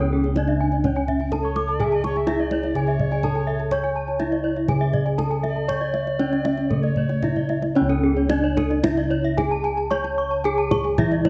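Shimmering and hypnotic, this short Balinese gamelan excerpt in C# pelog moves in a straight 4/4 at 112-125 BPM, led by a full, dry bronze metallophone melody struck with a wooden mallet, its paired tuning producing shimmering beats. An airy recorder with vibrato and a chiffy, crisp attack adds a second line until 7.7 seconds, while two more metallophones spin ringing arpeggios, one bright and horn-malleted, the other carrying a slapback echo. Round, vintage-toned bossed gongs hold the bass up front beneath a tight, close kendang, whose drum fill at 7.4 seconds leads into a new section, all set in a moderate recital-hall reverb.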